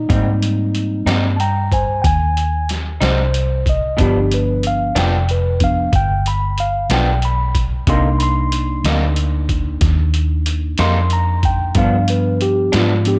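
A slow 12/8 blues pulse is carried by a muffled, pitched-down sampler-style drum kit with a thumpy kick and a tape-warm, compressed sound, under a dark, round, foam-muted electric bass sitting up front. A mellow, clean tine electric piano takes the solo throughout this smoky, soulful passage from a longer piece, moving over Abmaj7, G7 and Cm7 chords. A slightly broken-up, lo-fi electric guitar with harmonic tremolo sits low in the mix, all within a light reverb.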